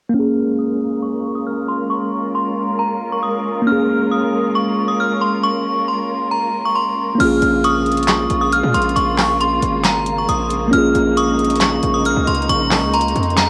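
Lightly reverberant and lo-fi, this home cassette recording is a dark, hard-hitting trap and hip hop passage at 136 BPM in a half-time 4/4 feel, set in Bb minor on a Bbm7 chord. From the start, an inharmonic, ringing FM bell carries the melody up front with chorus, phaser and cassette tape coloring. Beneath it sit a worn, slightly out-of-tune tine electric piano and a veiled, con sordino string section holding lush bowed chords, while a filter sweep runs through the opening until 7.2 seconds. At 7.2 seconds the booming analog drum machine and a saturated, aggressive 808-style bass with a noise layer arrive together. The drums bring a crisp snare, metallic hats and handclaps with a short room, along with crash cymbal, re-recorded in a small room. A second, quieter bell line enters in the background at 7.6 seconds, adding analog delay to its chorus and phaser.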